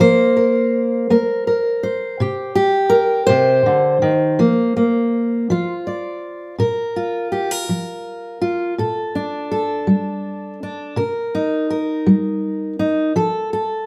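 In a straight 6/8 at 55 BPM in Bb major, this gentle, peaceful folk excerpt features a solo fingerpicked steel-string acoustic guitar with fresh strings and an auditorium tone, heard up front with audible finger squeak in a moderate stone-room reverb, moving from Fsus4 and Cm to a new passage at 6.6 s that opens on Bb5 and settles on F by 13.2 s.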